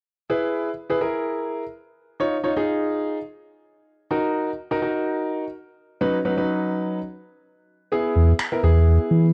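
A clear, intimate grand piano carries this upbeat, summery dance-pop fragment, cut from a longer piece. It sits up front with audible action noise and a natural character softened by cassette tape, playing accompaniment through E, C#add9, F#6 and Badd9/F# before returning to E at 126 BPM in a straight 4/4. Near the close, a deep, full sub bass with an octave enters at 8.2 seconds, its sine-and-triangle tone pairing a fast attack with sustained notes. Layered electronic finger snaps with a produced edge and the same cassette coloring land briefly at 8.4 seconds. A moderate studio reverb and the home-cassette recording frame the whole passage.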